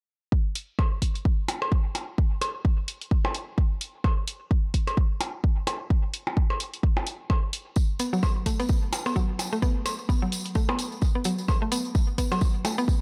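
A punchy, layered electronic kick sits up front from 0.3 seconds, driving this sparse, quirky minimal techno at 129 BPM in 4/4 with a 58% swing on the 16ths. An analog-toned electronic hi-hat and tape-colored percussion blips, re-recorded in a small room, join almost at once to fill out the groove. At 7.8 seconds a jingly acoustic tambourine arrives, close and dry. A woody, round, mallet-like FM synth pluck with a noise layer enters at 8.0 seconds, playing a percussive riff between F#3 and B3 with a fast attack and short decay, bright and up front with chorus, sidechain pumping and dub echo. The production is dark and carries little reverb, and the passage is cut from a longer piece.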